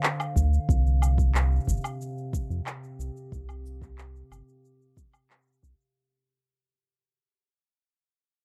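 Dry and close in the manner of a 1970s studio, this short playful folktronica clip fades out across its whole 6 seconds. A warbling, nostalgic pad with chorus and its own reverb holds dark, lo-fi sustained chords moving from Dm7 to Csus4, while a round, deep analog bass sits up front. A soft, overdriven electronic kick drum joins overdriven electronic handclaps, cabasa and woodblock, both re-recorded in a small room.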